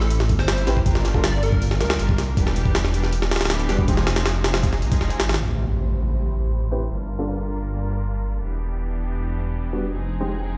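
Drum and bass with a jungle edge at 159 BPM in A minor, this dark, nostalgic fragment opens with a catchy square-wave unison lead sitting in the background, coloured by analog chorus, cassette tape and dub echo, for its first 2.1 seconds, while a bowed studio string section holds low-passed sustained chords, a deep, rumbling detuned saw bass sits up front, and a gritty, pitched-up sampler-style drum kit with a thumpy kick and high-tuned snare drives until 5.4 seconds, where an electronic impact lands; a mellow vintage grand piano adds recurring filtered stabs with dub echo, and the mix rings as if played on a big sound system in a bare stone room.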